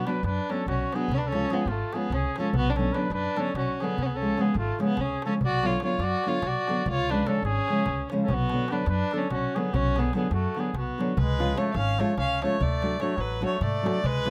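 Virtuosic and bittersweet, this Balkan wedding-band folk piece, cut from a longer piece, runs at 292 BPM in eighths over a straight 7/8 in B dorian sharp4, with a smooth, lightly vibratoed bowed fiddle carrying the melody up front while a classical-style trumpet plays a second line. A fingerpicked nylon-string guitar, also up front, supplies accompaniment, a woody, thumpy pizzicato upright bass holds the low end, and a crisp metal-shell darbuka played with hard hands sits close and dry in the background. The rough home-demo mix has a moderate studio reverb, and the harmony rocks between Bm and C# before moving to D near the end, as a new section begins at 11.2 seconds.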